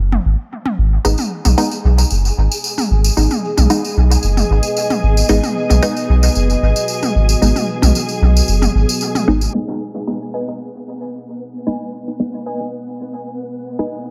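Cut from a longer piece, this dub techno passage sounds echo-heavy and low-pass filtered, with a light reverb and a nocturnal, deep mood at 113 BPM in straight 4/4, resting on G# minor. A soft, round sub bass sits up front beneath overdriven electronic toms and a jingly, vintage tambourine, both trailing dub echo. Muted chord stabs, detuned and phased, also feed into dub echo, while a flickering, grainy granular texture hovers around them. From 2.8 seconds a dark, moody ambient pad spreads out in chorus and reverb. At 9.5 seconds the bass, toms and tambourine drop away, a filter sweep moves over the pad, and a warbling, lo-fi pluck riff with subtle chorus and dub echo enters.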